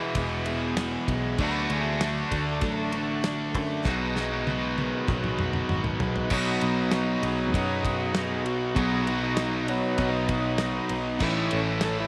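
A straight 4/4 groove at 98 BPM drives this swaggering classic rock excerpt in B mixolydian, with a damped 70s drum kit giving a dry, medium-tuned snare, a tight kick, toms, ride and crash, and a drum fill starting at 3.9 seconds. A growly, foam-muted picked electric bass anchors the low end, while an up-front cranked stack guitar plays an overdriven riff, joined further back by a raw garage guitar playing its own overdriven riff. Behind them, a full, shouting tonewheel organ holds sustained chords through light overdrive and a slow rotary speaker, and a very quiet picked steel-string acoustic guitar adds bright accompaniment with a hint of finger squeak. A dark, nasal lead guitar with a parked wah slips in a brief second line from 1.4 seconds. At 6.3 seconds a double-tracked, crunchy overdriven guitar joins with a riff as the harmony moves from E and D toward B and then A, all set in a light, small-room ambience.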